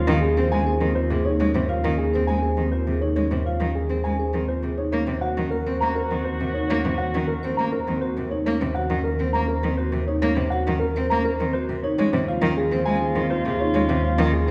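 A straight 3/4 pulse at 102 BPM drives this hypnotic, urgent stretch of minimalist classical pattern music in Eb dorian, cut from a longer piece. A boxy grand piano carries the melody over ringing, metallic vibraphone arpeggios played with soft mallets, while a bowed chamber double bass section holds a dark, up-front Eb2 with vibrato and portamento. A rich, expressive solo cello bowing with vibrato fills the accompaniment, and a mellow soprano saxophone slips in a brief second line at 0.0, 4.9 and 12.0 seconds, all set back in a wet recital hall over Dbadd9/Eb and Ebm7 harmony.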